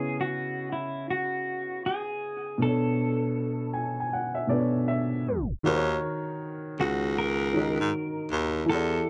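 Melancholic and reflective, this lo-fi hip hop excerpt at 79 BPM in Eb phrygian sets a clean, fingered electric guitar melody with scooped notes over a mellow, woody upright piano softened by cassette tape, as a filter sweep and a tape stop at 5.3 seconds give way to a bright, vibrato-laden baritone saxophone taking the bass line from 5.7 seconds in a moderate small-room ambience.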